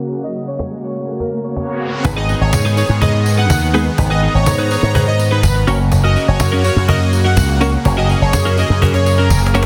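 Dance-pop in a straight 4/4, upbeat and euphoric, cut from a longer piece. It opens on a punchy, detuned chord stab with chorus and a filter sweep, over a lush sawtooth supersaw pad, while a riser sits in the background and a smooth soft supersaw carries the melody through digital delay. The snappy cajon comes in at 0.6 seconds, sitting close but in the background. At 2.0 seconds the drop arrives: an up-front slap bass, bright and punchy through its envelope filter, joins a dark, scooped clean electric guitar riff with analog chorus and a jingly tambourine. A short drum fill closes the passage at 9.3 seconds, and the whole mix has light reverb and a dense, heavily limited modern master.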